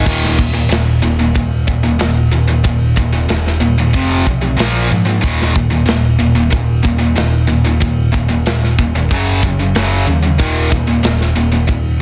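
A straight 4/4 pulse drives this aggressive, epic heavy metal passage, cut from a longer piece and played all the way through by a tight, double-tracked distorted guitar riff and a growly, overdriven picked electric bass. A tight acoustic drum kit, with a mid-forward, rolled-off top, a medium-tuned snare and soft clipping on the kick, enters at 0.1 seconds and works across crash, ride, snare and kick before stopping at 11.8 seconds. The guitar sits bright and up front, the bass is punchy and amped, and the whole sound is dry, dense and heavily limited in a modern master.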